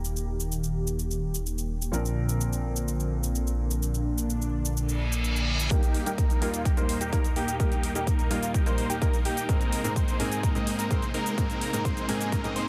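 A straight 4/4 pulse of metallic electronic shaker and hi-hat drives this uplifting, euphoric festival progressive house excerpt, where a soft felt-muted upright piano with 12-bit sampler grit and delay and an airy, phased unison pad pump under sidechain over a thick, saturated detuned saw bass that plays until 5.7 seconds; a very quiet reverse cymbal and riser entering at 4.9 seconds leads into a build-up in which a punchy, up-front electronic kick drum arrives with bright, huge supersaw chords under a sweeping low-pass filter and a dark, bold unison lead playing delayed arpeggios, set within digital ambience and a dense, heavily limited modern master.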